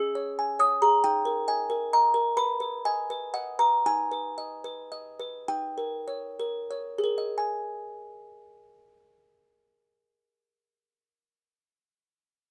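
Wistful and fragile, this excerpt from a longer classical piece is a lullaby for solo music box, set in a gentle six-eight metre with a straight feel. The music box plays alone from 0.0 to 11.0 seconds, its delicate, tinkling plucked notes spanning C#4 to E6 with a bright, full tone that suggests a small box. It is close-miked and up front, so each tine sounds intimate and near, while a moderate studio reverb gives the recording a modest sense of space. Through the opening section the music gradually slows until 7.4 seconds, where a second section begins. The harmony moves from C#m through D#5, B6, G#m/D# and D#7 before settling on G#5, heightening the tender, faintly melancholy, music-box charm.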